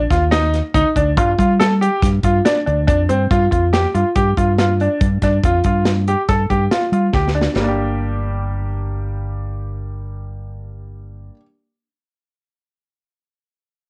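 Set in a straight 5/4 at 141 BPM, this short, tense cut from a longer progressive instrumental in G minor moves through intricate changes, from Ebmaj7(no3) to G5 and finally Gm. A round, dark fingered electric bass sits up front beside a brilliant, worn grand piano playing short-sustain arpeggios with a cassette tape character, while an acoustic studio drum kit with a tight kick, medium-tuned snare and hi-hat drives the pulse. The drums close with a fill from 7.1 to 7.6 seconds and then drop out, leaving bass and piano to carry the last section in a lightly reverberant home cassette recording.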